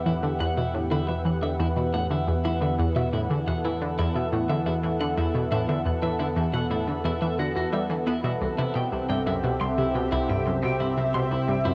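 A lush, detuned unison pad and a mellow, evolving sawtooth drone open this mysterious, cosmic stretch of ambient, sequencer-driven space music at 88 BPM in E minor. At once the pad's thick, nasal sustained chords sit up front with chorus while the drone holds the low bass. Just after, a round, up-front analog pluck riff with ring modulation, filter sweeps, chorus, delay and a cassette-tape colour arrives together with clean, twangy twelve-string electric guitar arpeggios trailing delay. The harmony rests on Emadd9 before moving to C at 8.4 seconds, all set in a moderate plate reverb with worn, warbling old-tape pitch drift, in a passage cut from a longer piece.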